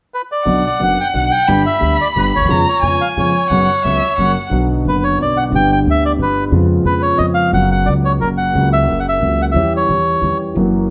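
Tango in a rubato three-beat feel, dramatic and melancholic and cut from a longer piece: a dark, reedy bandoneon carries the melody from the start while an expressive bowed violin with vibrato and portamento adds a second line until 4.5 s, over a concert grand piano with deep bass, long sustain and audible action noise and a woody, thumpy pizzicato upright bass on gut strings, set in a large studio with moderate reverb.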